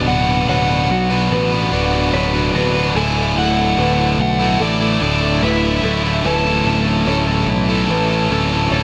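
A soaring, hopeful rock passage opens with every part sounding together: an overdriven slide guitar, played with fingerpicks, carries the melody high above a dense bed of guitars, piano and bass. Underneath, a bright, up-front distorted guitar and a compressed overdriven electric guitar each play a picked riff, while a clean, hollow-body semi-hollow guitar adds fingered arpeggios further back in the mix. A felt-muted upright piano, soft, dark and vintage in tone, murmurs its own arpeggios in the background. The fuzz bass sits up front, punchy and overdriven, anchoring the low end. The harmony moves from Bm7/D to Dadd9 at 3.0 seconds and A/D at 6.2 seconds, with slapback echo on the slide, piano and semi-hollow guitar and light digital reverb around the whole, before the slide guitar stops at 8.7 seconds, a moment ahead of the rest.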